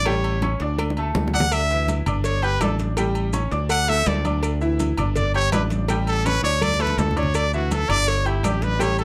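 Salsa with a sunny, joyful lift, this 9-second excerpt from a longer piece features a punchy, up-front trumpet solo carrying the melody, touched by a slapback echo, over a bright, direct fingered electric bass and a worn, slightly detuned upright piano cycling through A7, Dsus2 and G5 chords. Behind them sit congas with a thick-skinned sound, low-tuned cowbell and bongos, ringing metal-shelled agogo bells and timbales, and very quiet woody claves, with grainy maracas joining at 1.5 seconds. Drum fills arrive around 0.8 and 6.6 seconds, and the close, detailed sound carries only light reverb.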